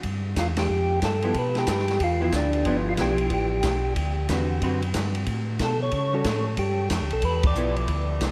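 Soul jazz organ trio at 184 BPM in a swung 4/4, soulful and bluesy, opening on a G13 chord and cut from a longer piece. A mellow, round tonewheel organ carries the bass line with chorus vibrato and key click beside an open acoustic drum kit of dark cymbals, boomy kick, snare, hi-hat and ride sitting up front, while a percussive tonewheel organ with third harmonic percussion takes the melody from 0.4 seconds through a slow rotary speaker and tape echo. A dark, hollow-body archtop guitar with analog chorus adds picked accompaniment from 1.2 seconds, band accents land at 0.5 and 7.4 seconds, and a cathedral reverb soaks the whole mix in a dreamy wash.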